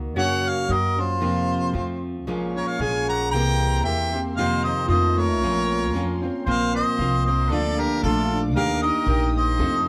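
A harmonica with light vibrato carries the melody up front in this festive, romantic mariachi-style folk excerpt, with a clear, roomy trumpet playing a second line alongside it. The piece moves at 114 BPM in a swung 2/4, with fingerpicked nylon-string guitar and a woody, dark pizzicato upright bass underneath. From 2.3 s a bright, ringing concert harp adds arpeggios and a very quiet, smooth bowed violin section holds chords. The music turns from Bb minor to Bb major at 6.5 s, all set in a small room.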